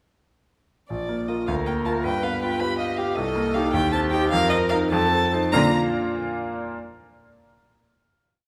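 Lively and graceful, this short, complete classical-period movement for piano trio in a straight 6/8 opens with a bright, brilliant concert grand laying out broken chords with deep bass and long sustain, while a close, rich violin sings a smooth, even melody with vibrato up front. A single bowed cello joins at 1.5 seconds with a soft-attacked, expressive counter-melody marked by portamento and sustained chords. The music slows from 2.6 seconds as the harmony moves through G7, Cm7 and F7 to a final Bb chord at 5.5 seconds, all set in a moderate stage reverb.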